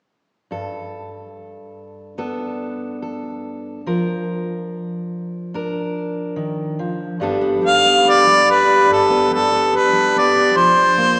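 Heard through a small speaker, this recording sits in a church-like space whose heavy reverb hangs for nearly three seconds around every note. It is a melancholic, intimate acoustic folk-pop ballad in 4/4 with a straight feel, cut from a longer piece. A full-bodied dreadnought steel-string guitar, fingerpicked and up front, opens the passage at 0.5 seconds, moving between Gadd9 and Bb/F chords. At 7.7 seconds a bright harmonica takes the melody as an up-front solo, played in a classical style with vibrato and a soft attack. Just after, at 8.1 seconds, a vibraphone struck with soft mallets adds mellow, ringing, metallic arpeggios with a slow motor vibrato, tucked well into the background behind the guitar and harmonica.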